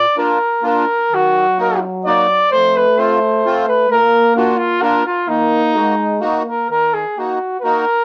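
A warm, distant flugelhorn sits up front and carries the melody in a classical style through this jolly, festive alpine folk dance-band fragment, played in 3/4 at 129 BPM in Eb harmonic minor, its tone colored by cassette tape. Beneath it, a reedy, sweet accordion with light tremolo tuning and a vintage, band-limited character supplies the accompaniment, while a clear euphonium adds a second line from 1.1 to 6.7 seconds. Moderate studio reverb gives the home cassette recording a roomy feel as the chords move through Bb, Ebm and F, with a fresh pass of the opening section beginning at 6.7 seconds.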